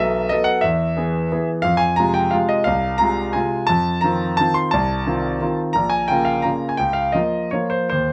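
A lilting 3/4 waltz pulse, pushed and pulled by rubato, carries this brief, elegant and graceful classical fragment cut from a longer piece. A solo grand piano with a clear, polished tone sits up front for the full 8.1 seconds, spanning from Bb1 up to C6 as the harmony moves through B7, E, Fm and F7 before settling on Bb minor. Close, detailed microphones and a light reverb keep the instrument present and clear.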